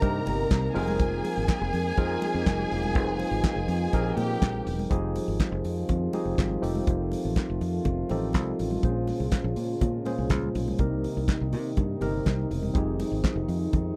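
A sultry, glamorous disco groove opens with a damped 70s drum kit with a fat snare, tight kick, handclaps and hi-hat, a punchy foam-muted fingered bass, bright thin-skinned congas in the background, a worn, slightly out-of-tune tine electric piano, and dark, distant French horns holding soft-attacked chords. A bowed string section adds an expressive line with vibrato and portamento before dropping out at 4.7 seconds. The rest of the excerpt moves through minor-seventh and dominant chords in a dry, close 1970s-style studio sound.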